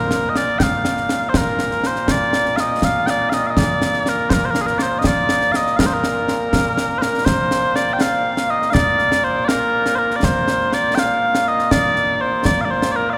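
In a straight 6/8, this ceremonial, proud piece of Scottish pipe music sets mellow, sweet small bagpipes up front carrying a continuous solo melody with vibrato, backed by close, dry concert snare and bass drum with dark cymbals, all bathed in a cathedral reverb that fills the hall across this short cut from a longer piece.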